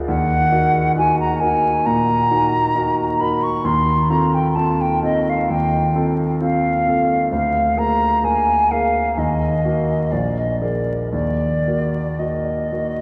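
Romantic classical duo in a yearning, solemn mood, moving with a flexible rubato in four, cut from a longer piece. The concert flute carries an expressive, airy melody with vibrato and tongued notes, while the clear grand piano accompanies with deep bass and long sustain, both sitting up front. A wet cathedral reverb surrounds the duo in a church or concert hall space, and vinyl crackle runs beneath the sound.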